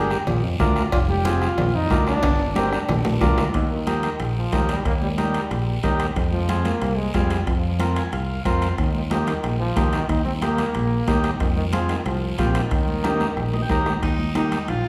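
A straight 4/4 cumbia groove at 183 BPM rests on a soft-beater bombo, high-tuned congas and a ringing cowbell and timbales set in the background, with a raspy guiro and a round, up-front fingered electric bass underneath, in a sunny, danceable Eb major. A bright, punchy trombone with vibrato carries a solo through the first 13.8 seconds over a buzzy vintage combo organ that adds short fills, while drum fills mark the turns between phrases. The wet hall reverb gives this short cut a spacious glow, and a gritty alto saxophone enters at 14.0 seconds.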